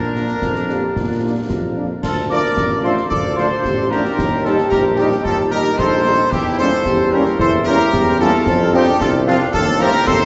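A bright trumpet section opens this proud, rousing excerpt from a military-style wind band march at 112 BPM in 2/4, carrying the melody over a distant, roomy tuba bass, a vintage-toned euphonium in the background and a close-miked woodwind section with vibrato on second lines. From 0.2 seconds the concert snare, bass drum and dark-toned clash cymbals join, while a very quiet French horn section adds accompaniment. At 2.0 seconds a pure, hollow piccolo slips in softly behind the band, and from 2.3 seconds a tight, smooth-topped trombone section holds sustained chords, the whole ensemble bathed in a long, wet cathedral reverb as the harmony moves from Bb through Dm, Eb and Edim7 toward F7/Eb.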